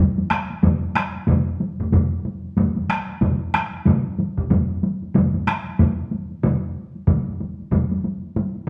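A swung sixteenth-note feel in 4/4 drives this powerful, driving fragment of Japanese traditional taiko drumming, cut from a longer piece. Two taiko ensembles struck with heavy sticks sound close and dry, one of them up front, while a third, hit with hard sticks, carries a vintage, band-limited edge and also sits forward. The three play live together in one room, bathed in a large, wet studio reverb, across the 8.7 seconds.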